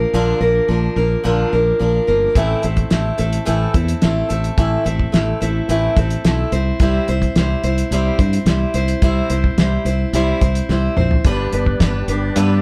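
Jangly and hopeful, this short folk rock and heartland rock excerpt moves at 108 BPM in C mixolydian, with a bright, up-front picked steel-string acoustic guitar and a growly, punchy fingered electric bass playing from the start, a cloth-damped, thuddy drum kit with a fat snare and tight kick entering at 2.4 seconds and rolling through a fill just before the change, and a tonewheel organ with key click, light overdrive, chorus vibrato and a slow rotary speaker adding sustained chords from 11.3 seconds, all in a live band room with light reverb.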